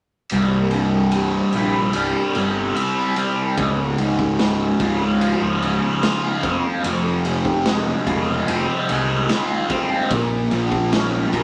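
A double-tracked fuzz guitar riff, bright and distorted with a phaser shimmer, sits up front from 0.3 seconds, joined at once by an overdriven picked electric bass and a gritty garage drum kit of punchy kick, snare and ride set back in the mix. This hypnotic, trippy psychedelic rock cut moves at a slow 74 BPM in straight 4/4, in C phrygian dominant, with the chords shifting from C to Db, then Fm and Bbm. The drums carry a saturated, rolled-off top and a pumping stone-room character, and a small room reverb surrounds the band.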